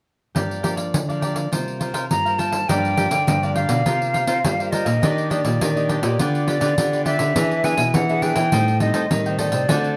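A mellow, crisply picked cavaquinho and a small, fingerpicked nylon-string guitar with fresh strings open this lively, bittersweet samba and choro excerpt in G minor at 103 BPM, joined at once by a jingly pandeiro sitting up front. At 2.1 seconds an airy, hollow concert flute enters with vibrato and a crisp attack, carrying the melody, and at 2.7 seconds a classical nylon-string guitar takes the bass line in the background as the harmony moves from Gm7 and C7sus4 through Ebmaj7, G7/D, E7 and Am7b5. Close, detailed microphones and light reverb keep the acoustic sound intimate.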